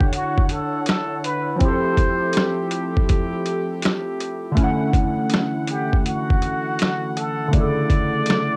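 A swung 81 BPM lo-fi hip hop groove in D major rides on a compressed, pitched-down sampler drum kit with a thumpy kick, finger snaps, hi-hat and overdriven snare, under warbling, detuned synth keys washed in chorus, a mellow brass ensemble holding soft sustained chords, and a breathy plunger-muted trumpet singing a nostalgic, intimate melody through cassette-tape grit and analog delay over Dmaj9 and Fmaj9 in this 8.6-second excerpt cut from a longer piece.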